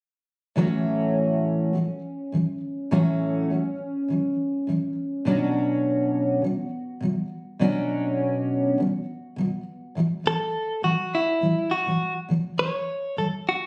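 Pop in A major at 102 BPM with a light sixteenth-note swing, heartfelt and easy-going, cut from a longer piece. A double-tracked, full-bodied jumbo steel-string acoustic guitar, fingerpicked and up front, carries the accompaniment from 0.6 seconds through chords of A6, Bmadd9 and A5. At 10.3 seconds a bright, clean, scooped electric guitar recorded direct and compressed takes the melody, all heard through moderate studio reverb with a phone-in-the-room character.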